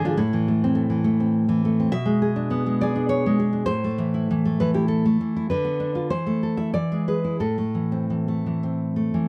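A romantic piece for solo classical guitar, this short passage, cut from a longer work, unfolds in A minor with a wistful, passionate mood. The tempo drifts between 86 and 106 BPM in a rubato 3/4, giving the phrasing a free, breathing quality. The nylon-string guitar is fingerpicked and sits up front, its tone full-bodied and deep, reaching from G#2 up to E5. The harmony moves from Am through G#dim/B and back, then passes Bdim/D, Am/E and E7 before settling on Am at 7.4 seconds. The sound is a dry, close 1970s-style studio recording with light reverb.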